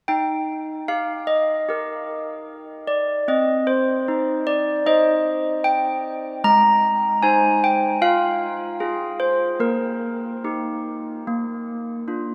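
A straight, even pulse in four carries this short classical tune for handbells, cut from a longer piece. A single set of handbells plays alone from 0.1 to 12.3 seconds, spanning Ab3 up to Bb5. The bells sit up front with a clear, ringing tone, struck with hard clappers that give each note a crisp edge while an airy quality hovers around them. A wet cathedral reverb with a long six-second decay lets every note bloom into the space, lending a festive yet serene glow. The harmony moves from Eb through Cm, Ab and Fm before settling on Eb/Bb and arriving on Bb at 11.3 seconds.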